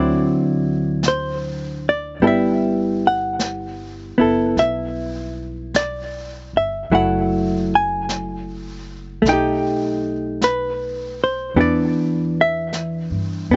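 A dark, clean hollow-body jazz guitar sits up front with a compressed, picked tone and a touch of slapback echo, carrying the chords of this intimate, wistful swung jazz ballad. Beneath it, a woody, thumpy pizzicato upright bass plays low, and a vintage brush kit of snare and hi-hat joins at 1.0 s with a natural, acoustic sound. The dry recording has a dull, rolled-off top, and the snippet is cut from a longer piece.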